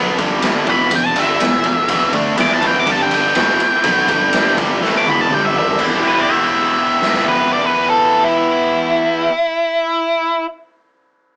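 Gritty and smoky, this blues rock and southern rock power-trio excerpt in E minor moves at 123 BPM in straight 4/4, built on a bright, double-tracked distorted guitar riff that moves between G5 and Em over a growly picked electric bass sitting in the background. Up front, a raw garage drum kit with a lo-fi, saturated sound, punchy kick and rolled-off top plays a fill at 4.8 s, while a dark octave-fuzz lead guitar carries the melody from 0.7 s to 10.5 s. The band sounds live in one room with moderate reverb and a small-speaker character.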